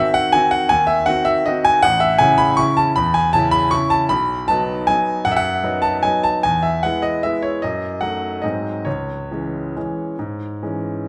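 A brilliant, up-front grand piano fills a large studio with moderate reverb, close enough that the action noise is audible and each note rings with long sustain. This elegant, bittersweet classical waltz in three-four time moves with a rubato feel. The solo piano spans the full 11.1 seconds of this fragment of a longer piece, ranging from A1 to C#6 and settling at the end on a minor chord.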